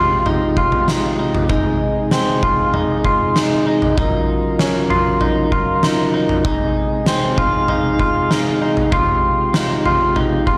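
Blissful and floating, this dream pop fragment, cut from a longer piece, moves in a straight 4/4 through chords of Fmadd9, Ab and Gbmaj7. A soft pipe organ on flute stops holds sustained chords in a romantic voicing, its tremulant adding a gentle flutter beneath a halo of shimmer reverb. Up front, a clean, twangy electric guitar picks compressed arpeggios, thickened by subtle chorus and analog delay and lifted by the same shimmer. An oversized, low-tuned drum kit enters at 0.3 seconds with a punchy kick, fat snare and toms, its saturated, gritty sound ringing through a bright stone room that pumps. Between 7.3 and 8.5 seconds a glassy, sine-like texture of drifting overtones blooms slowly in the background before fading on a long release, while the whole piece sits in a moderate concert hall reverb and is captured on cassette tape.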